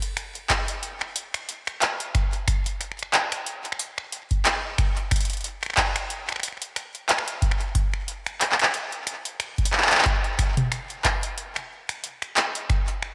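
A booming, up-front analog drum machine of finger snaps, handclaps, toms and metallic hi-hats, treated with digital delay, opens this intricate, playful IDM fragment in 4/4 with a swung sixteenth-note feel, joined at 0.5 seconds by a deep, tape-warm electronic kick drum, all set in a moderate plate reverb with bright 1980s-style digital production.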